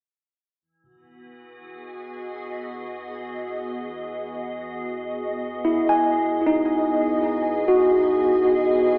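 This weightless, peaceful ambient fragment, cut from a longer piece and drifting in free time, opens with a deep, round sine sub bass fading in softly in the background at 0.6 s. At 1.6 s a glassy, ethereal FM pad fades in up front, sustaining an Emaj7 chord with a slow attack, long release, vintage cassette warble, ensemble chorus and its own reverb. At 5.6 s a clean tine electric piano enters with up-front arpeggios through built-in speakers, colored by cassette tape and tape echo, all set in a wet small room with the lo-fi feel of a home cassette recording and an AM radio.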